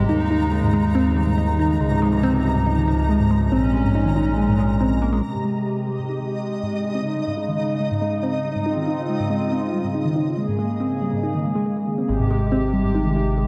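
IDM at 140 BPM in Ab major, this wistful, intricate excerpt is cut from a longer piece and moves through a looping cycle of Eb7sus4, Dbmaj9, Bbm7 and Abmaj7 chords. A hollow, flute-like pad holds soft sustained chords with chorus throughout, while a harp-like synth pluck spins ringing arpeggios through chorus and tape echo. A dark detuned saw bass with a rumbling, beating tone and tube saturation anchors the opening, drops out at 5.2 seconds, and returns at 12.1 seconds. Over the middle stretch from 5.2 to 12.1 seconds, a filter sweep reshapes the pluck. From the start, a faint, flickering granular texture glitters high above in its own reverb until it stops at 12.1 seconds. A moderate plate reverb gives the mix a spacious, reflective air.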